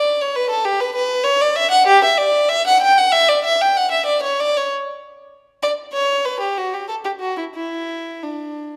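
Classical baroque-style suite movement in which a lone violin, close and up front with an airy, reedy gut-string tone in period style, plays a radiant, dance-like passage in a flexible, rubato triple metre through the full 8.8 seconds, carried by a moderate recital-hall reverb in this short cut from a longer piece.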